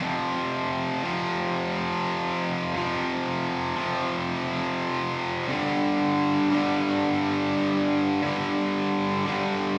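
A tight, distorted electric guitar carries this short rock cut alone from 0.0 to 9.8 seconds, picked and double-tracked so it sits bright and up front. The mood is driving and aggressive, moving at 88 BPM in a straight 4/4 feel, with the tuning set slightly under standard at A4 = 439 Hz. The guitar stays in a low register between F2 and G3, grinding on an F5 power chord before shifting to G5 at 5.5 seconds. Its distortion is paired with a slapback echo that gives each stroke a quick, snappy double. The sound comes from a live gig heard through the venue's PA, placed in a lush recital hall whose moderate reverb lingers around the guitar. Cut from a longer piece, the clip holds a single section for its full length.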